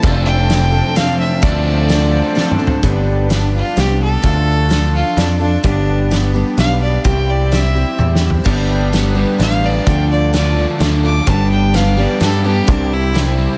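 This short excerpt from a longer piece sits in a dreamy mix soaked in a huge ambient reverb, giving its folk rock and heartland rock blend a reflective, wistful glow at 128 BPM in a straight 3/4. A bright, up-front picked electric bass anchors the low end, while a loose indie drum kit sounds distant and roomy, with dark cymbals, a fat snare and a tight kick, adding fills at 2.4 and 8.0 seconds. Beneath them a picked steel-string acoustic guitar keeps up a warm accompaniment with audible finger squeak, and a reedy, sweet accordion with light tremolo tuning holds sustained chords in the background. A double-tracked, crunchy overdriven guitar plays a riff at the opening, drops out at 2.8 seconds and returns at 8.5 seconds. From 2.8 seconds a single clear, earthy fiddle with light vibrato and a smooth top takes a bowed solo over chords moving between G, Dm and C.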